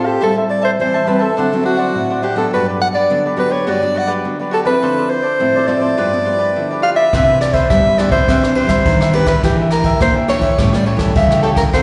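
A straight 4/4 samba-and-choro groove at 104 BPM sets a nostalgic yet lively mood, as a breathy, subtone soprano saxophone sings the jazz-style melody up front over crisply picked cavaquinho and a fingerpicked nylon-string guitar, these three touched by slapback echo, while at 7.1 seconds a full-bodied, deep classical nylon-string bass line and a brushed jazz kit with a punchy kick, dark ride cymbal and rim clicks join in, the chords moving from Am7 through Gmaj7 and Cmaj9 to A7b9 in this short cut from a longer piece, heard as a live gig through the venue's PA with a recital-hall glow and a softened top end.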